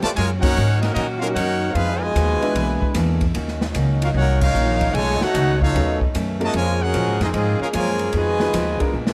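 Big band swing in B-flat minor, this excerpt of a longer piece moves at 150 BPM in 4/4 with swung eighth notes, and its mood is dramatic and sultry. A brilliant, close-miked trumpet section carries the melody up front with light vibrato and a soft attack, while a mellow, vintage-toned trombone section sits in the background with a second line. Underneath, a very quiet saxophone section holds tight, clear sustained chords, and a full-bodied jumbo steel-string acoustic guitar adds fingerpicked accompaniment from the background. A woody, thumpy upright bass played pizzicato on gut strings sits up front, and an airy, polished drum kit with a punchy kick, hi-hat, ride and crash keeps the swing going. A natural-sounding baby grand piano comes in at 0.4 s, drops out, and returns at 5.8 s, the band hits accents at 0.4 and 4.4 s, and a drum fill arrives at 8.9 s over a dark production with light reverb and chords moving through Fm7b5, E7#11, Ebm7, B9 and Bbm7.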